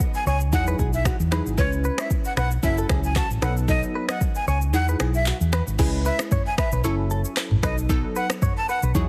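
An afro-pop drum kit opens this sunny, romantic afrobeats excerpt at 114 BPM in 4/4, its deep, overdriven kick sitting up front alongside finger snaps, handclaps, rim clicks, shaker, toms and crash cymbal, all with a lightly swung sixteenth-note feel. A breathy jazz flute carries the melody in its upper register, its crisp, chiffy attack and vibrato floating over a round, dark hollow-body bass that is placed close and prominent. A clean, twangy electric guitar recorded direct plays a compressed, picked riff touched with subtle chorus and tape echo, while a glassy wavetable pluck adds crystalline, detuned accompaniment with ring modulation, a moving notch and a filter sweep. The harmony cycles through Emaj9, C#m7, F#m7 and B7, and the kick drops out from 4.7 to 5.8 seconds before the second section begins. The whole mix carries a heavily compressed, radio-like digital ambience.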